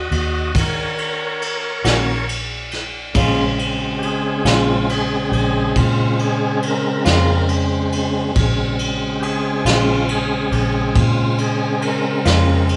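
Slow blues in 12/8 at 46 BPM in Bb minor, mournful and smoky, this excerpt features a gritty, overdriven tonewheel organ soloing up front through a slow rotary speaker with chorus vibrato and key click over Ebm7 and Bbm7 chords, supported by a round, foam-muted vintage bass, a brushed drum kit with dark cymbals and a punchy kick, and a slightly broken-up guitar with harmonic tremolo entering at 1.8 seconds, all captured as a band playing live in one room with moderate large studio reverb.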